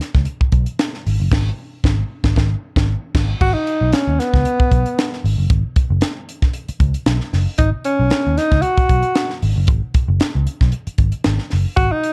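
A dark, warm small-room sound frames this cool, sly funk cut, taken from a longer piece. Up front, a crisp, polished fusion kit with a punchy kick, high-tuned snare and dusky cymbals sits beside a round, foam-muted picked electric bass, and the band hits accents together from 1.3 to 3.4 seconds over an open, chordless start. At 3.4 seconds a mellow tenor saxophone steps in as soloist over a minor-seventh chord, its jazz phrasing shaded by subtone, vibrato and scooped notes with a smooth top.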